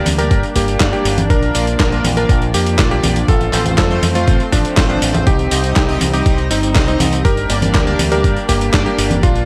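Melodramatic and nostalgic, this short italo disco excerpt sets a clear, clangy electric grand piano melody with delay over a lush, warbling unison pad carrying sustained chords through a Gm, Bb, F/A and Cm progression. Glossy chorused polysynth stabs with filter sweeps sit in the background, both synth layers roughened by 12-bit sampler grit, while a punchy fingered electric bass with an envelope filter drives the low end. Up front, a dusty, overdriven sampler-style kit of congas, handclaps, hi-hat, tambourine and a medium-tuned snare with gated reverb joins at 0.1 seconds, followed by a thumpy overdriven electronic kick at 0.3 seconds, all in a light digital ambience.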